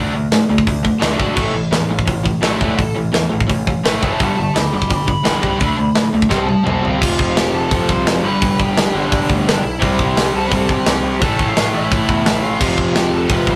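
Two overdriven rhythm guitars open this angry, raw punk rock clip in A minor at 171 BPM: one bright and set back in the mix, the other dark and compressed, both picking riffs alongside a growling, overdriven picked bass. A tight metal drum kit with a rolled-off top sits up front from 0.3 seconds, and a lead guitar through a small cranked amp adds a shadowy, overdriven solo line from 1.0 seconds. A drum fill carries the song into a new section at 7.0 seconds, all captured in a rough rehearsal-room recording with modest small-room ambience.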